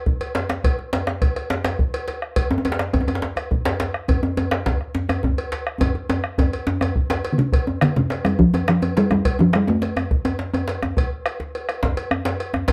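Earthy and driving, this short excerpt from a longer West African traditional drum ensemble piece moves at 139 BPM in a straight 12/8 in F major pentatonic, with a deep, close bombo, a tight, cracking djembe set in the background, a saturated, compressed djembe up front and a metallic cowbell in a live room all starting within the first second, drum fills at 0.2 and from 5.8 to 7.5 seconds, and a resonant talking drum carrying the melody from 7.3 to 10.8 seconds between C3 and A3, all in a dark production with moderate studio reverb.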